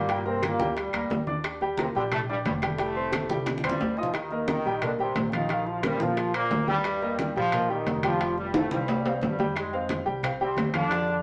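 Salsa with a sunny, danceable lift, cut from a longer piece, where a brilliant, tight trombone section carries the melody up front with light vibrato over a warm, worn concert grand piano with deep bass and short sustain. Underneath, a dark, thumpy pizzicato upright bass on gut strings sits with low-tuned, thick-skinned congas, ringing metal-shell timbales, very quiet high-tuned bongos and dry, woody claves that play from 0.4 to 3.8 seconds and return at 9.6 seconds. Drum fills arrive at 3.5 and 8.5 seconds, and a wet studio reverb gives the band a lively room.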